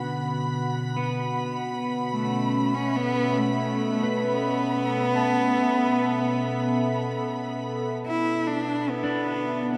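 A close, rich solo cello carries the bowed melody with smooth vibrato and tape echo from 2.1 s, sitting up front in this serene, spacious ambient piece at 71 BPM, cut from a longer work. Beneath it, an evolving, detuned wavetable pad holds sustained chords over Bm and Aadd9/B, morphing through a filter sweep until 8.0 s with chorus and phaser. A dark, slightly broken-up electric guitar plays fingered arpeggios in the background through lush chorus and tape echo, a chamber violin section adds an even bowed texture, and the ensemble sits in a vast, echoing cathedral reverb.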